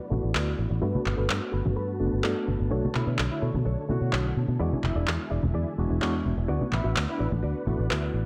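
Groovy and sensual, this filtered disco house excerpt moves at 127 BPM in a straight 4/4, with a round, foam-muted fingered bass up front, barky overdriven electric piano with fast tremolo and phaser, lush vintage string machine chords with ensemble chorus in the background, a clean, compressed chorused guitar riff, soft-handed tambourine and congas, roomy electronic handclaps, and a clear jazz-style horn section carrying the melody from 2.9 to 7.3 seconds, all moving through D6, Gmaj9, Bm9 and E7 under a filter sweep and light reverb.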